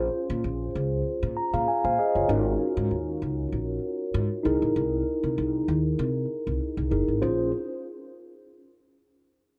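Bittersweet and slick, this short cut from a polished 1980s jazz-funk pop piece moves at 97 BPM in a lightly swung 4/4 in Bb minor, with a mellow, clean tine electric piano under subtle chorus voicing Bbm9, Ab9sus4 and C7alt and adding a fill from 1.1 to 2.3 seconds, while a woody, growly pizzicato upright bass sits up front beside it, both parts playing until 7.5 seconds inside a dreamy mix soaked in lush hall reverb.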